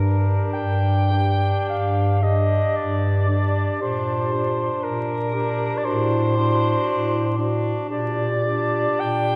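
Melancholic and solemn, this classical fragment for single-reed quartet, cut from a longer piece, moves slowly and freely at 46-60 BPM in G minor. Up front, a mellow soprano saxophone carries the lyrical melody with light vibrato and a vintage character, over a soft-attack bass clarinet line, while a dark clarinet's second voice sits in the background and a distant tenor saxophone provides roomy accompaniment. A wet church reverb and vinyl crackle surround the quartet as the harmony moves from G minor to D7 at 5.8 seconds and back at 7.9 seconds.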